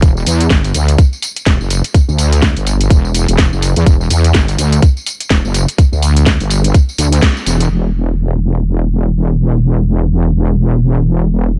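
A swung sixteenth-note groove from a tight, up-front electronic kick and a garage kit of cracking snare, hi-hat and tambourine drives this bouncy, aggressive bass house drop beneath a heavy, detuned sawtooth wobble bass with overdrive, chorus and sidechain pumping, until a band accent at 7.2 seconds, after which the drums fall away by 7.7 seconds and the bass carries on alone in a dry mix to 11.6 seconds.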